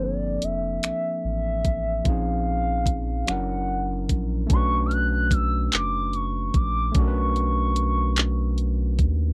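This slow six-eight R&B fragment, cut from a longer piece, moves at 49 BPM with a straight feel and a late-night, yearning mood. A smooth, mellow lead carries the melody up front, gliding with portamento and vibrato and dressed in chorus, phaser and slapback echo. Beneath it, an overdriven tine electric piano plays barky, gritty accompaniment through a combo amp, while a round analog bass with a deep, dark tone and a filter sweep anchors the low end. An electronic drum kit enters at 0.4 s with finger snaps, handclaps, tape-warm hi-hat and a knocking kick. The harmony drifts through Gm11, A#m11 and F#7b13 before settling into B minor on Bm9 at 4.5 s, and the dry, close 1970s-style studio sound keeps the mix intimate.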